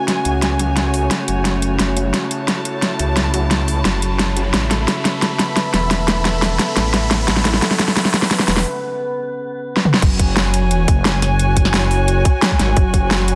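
A metallic wobble bass drives this tense, mechanical clip of dark technical drum and bass at 175 BPM in F# minor, its aggressive, saturated FM tone sitting up front with chorus and sidechain pumping. Beneath it, a dark chamber string section plays soft-attack, sul tasto textures with light vibrato, while an eerie, nasal metallic drone holds inharmonic sustained chords through the build-up, moving from F#m to Aadd9. A dubstep drum kit with a huge snare, metallic hats and tape-warm toms and crash runs a long drum fill, joined by a very quiet, ring-modulated orchestra-hit-like synth stab and an electronic riser in the background before a short break. At 10.0 seconds the drop lands on F#5, with a tight, layered electronic kick pushing forward and a thick, growling FM bass with tube saturation appearing at 10.9 seconds. The mix is dense and heavily limited, with light reverb.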